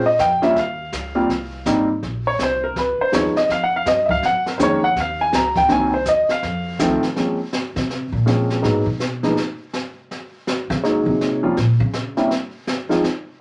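Smoky and swinging, this short cut from a longer jazz piano trio piece moves at a brisk, lilting swing in 4/4. An up-front upright piano with a warm, natural tone carries the melody and takes the featured solo spot for the first 7.2 seconds. The upright bass, plucked with steel strings and a woody timbre, then steps forward to take its own solo turn. Underneath, a brushed drum kit adds a high-tuned snare, a boomy kick and hi-hat, sitting lower in the mix than the piano and bass. The harmony wanders through rich colors such as Eb7sus2, Db9, Gb69 and Bbm9, with brief open moments before the bass stops at 12.3 seconds. A wet, small-room reverb gives the trio an intimate, club-like closeness.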